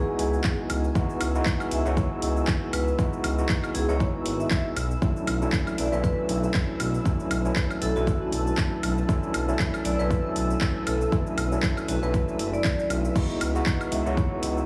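Heavily compressed and radio-like under a light digital ambience, this smooth deep house clip is cut from a longer piece, with an overdriven electronic kick up front and a gritty, overdriven drum kit of metallic hi-hats, handclaps, shaker, woodblock and crash cymbal riding a swung groove. An overdriven tine electric piano, barky and bright through a combo amp, plays up-front stabs with fast tremolo, lo-fi sampler grit, tape echo and sidechain pumping. A nasal, detuned synth bass and a cloudy, evolving granular pad pump along with a ringing vibraphone melody with tape echo, as the harmony moves from C#m11 to Bm11 at 4.8 seconds and back at 13.2 seconds.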